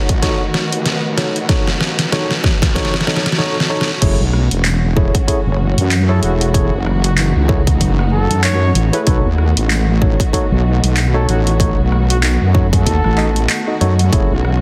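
A heavy, saturated wobble bass sits up front in this playful, swaggering glitch hop excerpt, its detuned sawtooth tone thickened with chorus and trimmed by a high-pass filter. A punchy electronic kick shares the front of the mix, while a layered dubstep kit adds a deep snare, handclaps, rim clicks, hi-hat and crash cymbal, both drum parts re-recorded in a large room and carrying a swung sixteenth-note feel. Beneath them, a lush, woody string section holds sustained chords and a clean tine electric piano plays stabs, both pumping with the sidechain and the piano trailing digital delay. The opening build-up brings a drum fill and a filter sweep on the strings before the drop lands at 4.0 seconds. A dark, classical-style solo trumpet with vibrato and a soft attack enters at 6.1 seconds, its line echoed by digital delay, and the whole mix is wrapped in light reverb and squeezed into a heavily compressed, radio-like sound.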